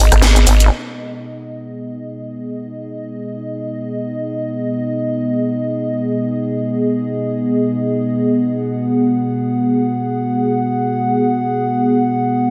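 A dark analog pad and a nasal, wobbling vowel-sweep wobble bass open this bass house fragment together on a G# minor chord, in free time with an aggressive, bouncy mood. A garage drum kit joins at 0.1 seconds with hi-hat, rim click, shaker and a cracking snare, its layered electronic sound tape-tinged and set in a small room ambience, and the band hits an accent at 0.2 seconds. The saturated, resonant bass sits up front on a low G#, its formant-filtered tone thickened by chorus and tube saturation, before it and the drums stop at 0.7 seconds. From there the moody pad carries on alone until 12.5 seconds, its detuned, ring-modulated chords with a sub octave drifting under a filter sweep through a slow attack and long release. A moderate plate reverb and a dense, heavily limited modern master frame the sound.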